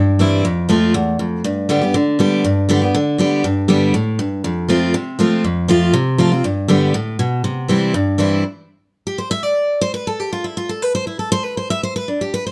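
A straight 4/4 pulse drives this bluegrass passage at a brisk 240 BPM, carried entirely by a single picked steel-string acoustic guitar. The dreadnought has a bright, full-bodied voice with the ring of fresh strings, and it sits up front through close, detailed microphones with a touch of light reverb. From 0.4 seconds the guitar moves through an F, G and C progression, ranging from E2 up to E5. At 8.4 seconds the harmony drops away and the guitar breaks into an unaccompanied solo that runs until the cut at 12.5 seconds. The mood is rustic yet virtuosic, a short slice taken from a longer performance.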